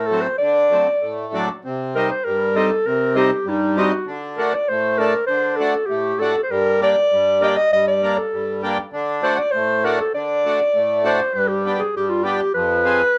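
A dark, warm production in a moderately reverberant small room frames this bittersweet yet festive klezmer piece in D phrygian dominant, moving at 99 BPM in a straight 2/4. Up front, a clarinet with a smooth top and plate reverb carries the solo melody in a jazz style, colored by vibrato and scooped notes. An equally forward accordion, reedy, full and airy, supplies the accompaniment under chords moving from D through Cm and Gm before the harmony turns to G at 11.4 seconds and then to Fm at 12.6 seconds.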